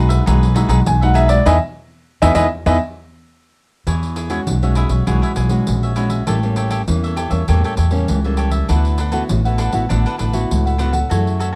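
A warm concert grand piano stands out, carrying an up-front melody with deep bass between 0.9 and 2.8 seconds during the opening solo, while the band adds an accent from 1.5 seconds. This is a playful, sunny fragment of samba and choro at 100 BPM in a straight 4/4, starting in E major on an Emaj9 chord and turning to E mixolydian at 3.9 seconds, where the harmony moves through E69, A7b9 and D69. Underneath, a growly, woody upright bass played pizzicato sits up front, while a bright, crisp, picked cavaquinho and a fingerpicked nylon-string guitar with classical character, fresh strings and audible finger squeak fill out the accompaniment with a cassette-tape color. A jingly pandeiro joins almost at once, sounding as if played in a live room. The whole fragment has the intimate feel of a home cassette recording, dry with little reverb.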